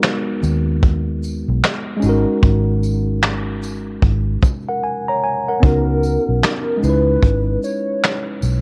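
A worn, slightly out-of-tune tine electric piano stands out up front in this hazy, reflective lo-fi hip hop excerpt, its cassette-tape color drifting through a rootless Emaj9#11 and then G#9sus4 at 75 BPM with a swung 16th-note feel. A vintage brush drum kit with a punchy kick, medium-tuned snare, hi-hat, shaker and finger snaps sits mid-forward with a rolled-off top, while a dark, foam-muted fingered electric bass joins at 0.4 seconds with a round, amped tone. A close, jingly tambourine enters at the same moment, sitting quietly low in the mix. After a brief break at 4.8 seconds, a mellow, detuned lead built from triangle and sawtooth tones arrives at 5.6 seconds over Bmaj9/C# and C#m9, its nostalgic line carrying chorus, tremolo and vibrato. Light studio reverb and a warbling old-tape pitch drift give the whole recording a faded, dreamlike quality.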